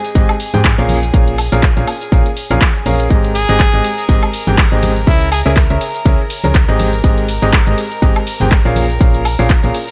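Swung sixteenths drive this joyful, feel-good piano house excerpt, where a punchy electronic kick sits up front beneath a layered house kit of handclaps, hi-hat, ride and woodblock, saturated tambourine and congas, a round, dark FM bass and a bright, woody upright piano riff with audible action noise and digital delay. The bass and piano pump with sidechain compression alongside a clear, biting chamber violin section that holds sustained chords in the background and pumps as well, while a solo trumpet with vibrato briefly sings a short melody from 3.4 to 5.5 seconds inside a small room.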